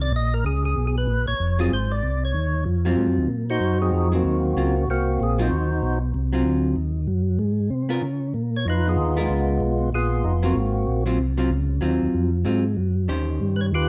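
A fat, lightly overdriven tonewheel organ with third-harmonic percussion, vibrato and a slow rotary speaker carries the melody in this greasy, swinging soul jazz organ trio at 190 BPM in Ab mixolydian, playing from the start to 6.0 seconds and returning at 8.6 seconds. A dark, clean, picked hollow-body electric guitar plays accompaniment throughout, while a smooth second organ, also through a slow rotary speaker, holds down the bass line over Ab13, Db13 and Eb13 harmonies. The production is dark and warm with light reverb, and this excerpt is cut from a longer performance.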